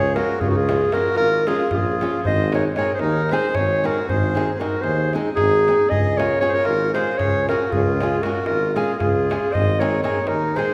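Virtuosic and wild, this Balkan wedding-band folk piece runs at 230 BPM in 7/8 in Db major over Db and Ab harmony, with a mellow, classical-style clarinet carrying the melody up front above a reedy, close-miked accordion second line, a warm, present tuba bass, a deep, saturated clay-shell darbuka and a boxy, fingerpicked nylon-string guitar that joins at 0.2 s, all set in the wet reverb of a church or concert hall.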